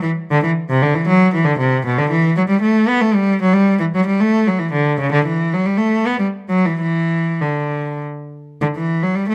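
A clear, focused solo cello, bowed by one player with vibrato and heard close and up front, carries this radiant, serene baroque-style suite movement in a flexible, rubato 3/4, ranging from B2 to B3 across roughly 9.3 seconds of a longer piece, all set in a moderate stone-room reverb.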